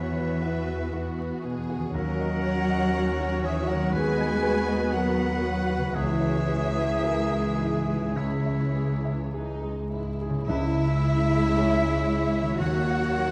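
Played rubato in 4/4 at roughly 50 to 61 BPM, this bittersweet, longing passage of cinematic film score sits in C# dorian and is cut from a longer piece. A close, expressive violin section carries the melody with vibrato, joined by a second, rich-toned violin line and a solo oboe with light vibrato and a vintage, classical character. Beneath them, a clear concert grand piano with deep bass, a distant viola section, a mellow French horn section holding tight sustained chords, and a ringing, thumb-plucked harp playing arpeggios all sit in the background. The low end comes from a dark bowed double bass section and a smooth, even cello section. At 10.5 seconds, as the second section begins, a very quiet, airy flute ensemble adds a crisp line, and soft-mallet timpani with a round tone sound until 12.0 seconds. The chords move from Esus2 through D#m7 and B/D# to C#m before returning to D#m7, all wrapped in a moderate scoring-stage reverb and a dark, warm production with vinyl crackle.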